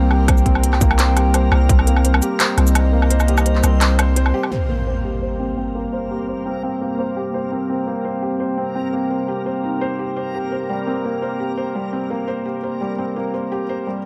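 Half-time drum and bass at 170 BPM with a light swing opens on a drop, where a hard-clipped electronic kick and a crisp, tape-warm kit of handclaps, hi-hat, shaker and woodblock ride under a deep, up-front sine 808 bass, while a dark, wave-folded analog pad pumps with chorus, a soft, felt-muted upright piano plays filtered, delayed arpeggios, and a reversed, granular texture swells, until the kick falls out at 3.1 seconds, an up-front impact lands at 4.5 seconds, and the pad, piano and dreamy texture carry the tense, spacious mood onward in light digital ambience.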